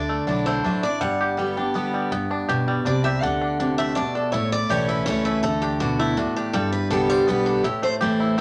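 Driving and rustic, this bluegrass excerpt in G major moves at 163 BPM in a straight 3/4, with a twangy, fingerpicked banjo and a bright picked dreadnought guitar carrying the melody over a full-bodied, up-front rhythm guitar and a woody, thumpy upright bass, all heard throughout the 8.4 seconds in a wet studio reverb as the chords pass from Dadd9 through G, D, A and D5 to G and Am, with a brief opening section giving way to a new one at 2.1 seconds.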